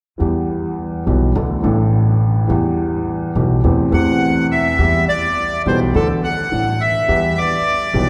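A baby grand piano and a pizzicato upright bass open together at 0.2 s, setting a tense, sultry tango mood in a loose, rubato feel. The piano sits up front with an open tone and long sustain, while the bass gives woody, dark support from its steel strings in the low register. Their harmony moves among Em, Dsus2 and Am7/E before circling back through the same pattern. At 3.9 s a bright, reedy bandoneon steps forward with the melody and carries it high above the accompaniment until the fragment breaks off at 8.1 s. A deep church reverb with a long tail surrounds the playing, giving this short cut from a longer piece the resonance of a large hall.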